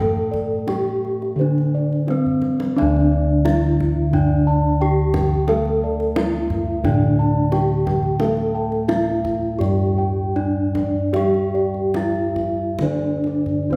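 In a straight 4/4 that moves between 65 and 88 BPM, this serene, shimmering passage of Javanese gamelan in D slendro unfolds as a section cut from a longer piece. A bronze metallophone struck with a wooden mallet carries the melody up front, its paired tuning producing shimmering beats. Beneath it, a second metallophone played with padded disc mallets gives a mellow, dark, smooth accompaniment. Bossed gongs share the texture: one set sounds arpeggios with a round, boxy small-room tone, while another holds the bass, close-miked, dry and full. The deep kendang enters at 0.2 seconds and plays a fill just before a third, soft metallophone joins with its own arpeggios at 2.8 seconds, opening the second section. A wet recital-hall reverb places the ensemble further back in the room, letting the ringing bronze bloom.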